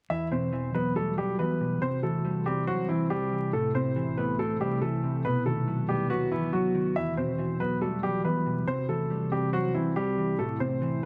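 Vinyl crackle and a light studio reverb frame this dark, ominous hip hop excerpt, moving at 140 BPM in a half-time 4/4 feel in E harmonic minor. A woody upright piano carries the melody up front from 0.1 s, alongside a mellow, clean, fingered and compressed electric guitar accompaniment, with the harmony cycling through Emadd9, C, Am and B. At 1.1 s a deep, moody sawtooth pad with detuned unison voices, a sine sub octave, slow attack, long release, chorus and its own reverb settles in the background with sustained chords.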